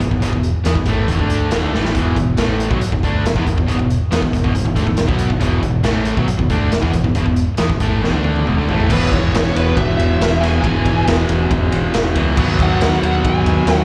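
Heard live through a club PA with light reverb and small-room ambience, this energetic, anthemic hard rock excerpt at 138 BPM opens on an E5 chord, with a bright, overdriven electric guitar and a hollow-body semi-hollow guitar, set in the background, both playing picked riffs with slapback echo over a growling, punchy fingered bass. A raw garage drum kit sits up front with a punchy kick, dark cymbals and a gritty, saturated, pumping room sound, and it plays a fill from 8.0 to 8.9 seconds. At 8.9 seconds the music moves into E major as a bluesy, distorted lead guitar enters with a picked melody carrying slapback echo and analog delay.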